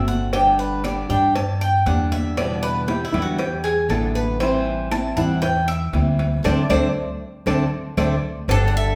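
Latin Cuban son in a relaxed guajira vein at 118 BPM, this excerpt from a longer piece opens with a bright, metallic Cuban tres soloing in picked arpeggios over fingerpicked flamenco guitar, a dark, woody pizzicato upright bass up front, ringing high-tuned congas, a round low-tuned cowbell and very quiet claves, all moving through G5, Em7, Am7 and D5 in a large, reverberant room, with a band accent at 6.5 seconds and a drum fill at 7.5 seconds before a second, up-front tres takes the melody alongside a pure, vibrato-tinged silver concert flute at 8.5 seconds.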